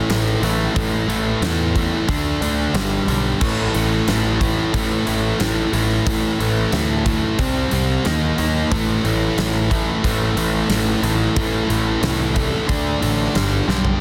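A biting overdriven electric guitar sits up front, picking a heavy, menacing hard rock riff in A minor at 91 BPM in a straight 4/4, its tone both warm and gritty as it moves through power chords on A, D and G before turning to C and D#, then passing through A minor and back to D and G. Beneath it, a fuzzed, picked electric bass plays in a low register, bright and punchy with an amped, overdriven snarl. A huge arena drum kit drives the groove with a fat snare, punchy kick, toms, hi-hat and bright crash cymbals, its acoustic sound carrying a hall-like sense of size. A drum fill at 13.7 seconds closes this short, dry excerpt, which is cut from a longer piece and carries a dense, heavily limited modern master.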